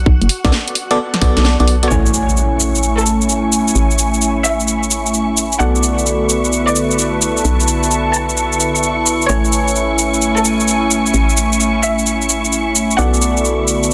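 Soulful and bouncy, this cut from a longer UK garage piece rides a swung two-step groove at 130 BPM in A major, moving between Bm7 and Amaj7 chords. A hollow, knocking FM bass punches low beneath a silky vintage string machine whose sustained chords pump under sidechain compression and shimmer with ensemble chorus. An electronic kick drum thumps only briefly at the start, while a tape-warm garage kit of cabasa, hi-hat and a cracking snare sits up front for the rest of the track. Glassy, bell-like FM electric piano stabs arrive at 0.4 seconds, filtered and trailed by chorus and dub echo. At 1.9 seconds an electronic impact marks the shift into the main section as a clear, focused studio violin section takes the melody with vibrato and digital delay, joined soon after by an airy, breathy pad that also pumps. A moderate plate reverb holds the parts together in a dense, heavily limited modern master.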